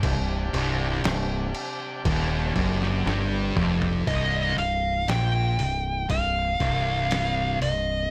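A dark, fuzzed-out lead guitar comes up front at 4.1 seconds, playing a high melody through wah, distortion and digital delay in this brooding, sludgy stoner and doom metal excerpt in C minor, crawling at 59 BPM in 4/4. Beneath it, two picked, distorted fuzz guitars share a low riff over a C minor chord in the background, one warm and the other dark and thick. A growling fingered electric bass, overdriven and up front, anchors the bottom. A lo-fi sampler-style drum kit, pitched down, compressed and muffled, with a thumpy kick and a medium-tuned snare, works across kick, snare, hi-hat, crash and toms, and plays a fill just before the lead guitar arrives. In the background, a bright, shouting tonewheel organ holds sustained chords through light overdrive and a slow rotary speaker until 4.0 seconds, and the whole mix stays dry, with little reverb.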